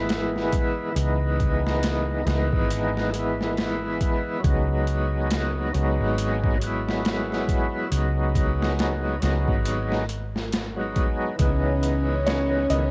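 A swung 4/4 boom-bap groove at 69 BPM drives this smoky, dark trip hop excerpt in C# minor, where a thick, overdriven tonewheel organ through a slow rotary speaker, tremolo and tape echo sits up front over a round, punchy hollow-body electric bass and a gritty, pitched-down sampler-style drum kit with a thumpy kick and high-tuned snare, moving from C#m7 to Emaj7 and back before lush bowed strings enter at 11.4 seconds and a soft, felt-muted upright piano with audible action noise adds a brief melody at 12.3 seconds, the dry mix carrying the character of a home cassette recording.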